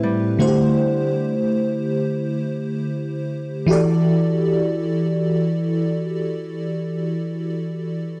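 A moody, longing R&B fragment in free time opens with a woody, boxy fingerpicked acoustic guitar playing arpeggios until 1.3 seconds beside an up-front, dreamy FM electric piano with a soft pad layer, detuned and dark with chorus and tremolo, which carries on alone through a D7sus4 and then an Em11 at 3.7 seconds in a gritty hardware recording touched with light reverb and digital ambience.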